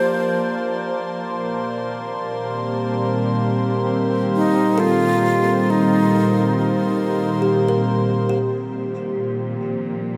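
A straight 4/4 pulse carries this serene, luminous ambient excerpt, where a glassy FM pad holds chorused, up-front chords beneath a breathy, hollow alto flute melody and a kalimba's woody, ringing arpeggios, both trailed by diffuse delay, while a reedy pedal harmonium drones close and dry until a smooth bowed cello section enters on the bass at 8.3 s, all set inside a huge, wet reverb.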